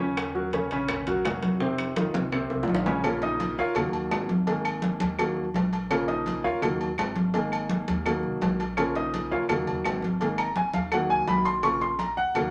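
A short reverb of a club room and a faint mains hum frame this driving, danceable salsa cut from a longer piece, moving at 167 BPM in Bb minor. Up front, a clear grand piano with audible action noise plays accompaniment over a dark pizzicato upright bass with steel strings, saturated hard-hand congas, tight high-tuned bongos and cowbell, ringing metal-shell timbales with agogo bells, and woody claves placed close and dry in the background. A drum fill from 2.1 to 3.0 seconds leads into a polished, intimate piano solo that runs from 3.0 seconds to the end over a cycling Bbm, Ebm and Absus2 progression.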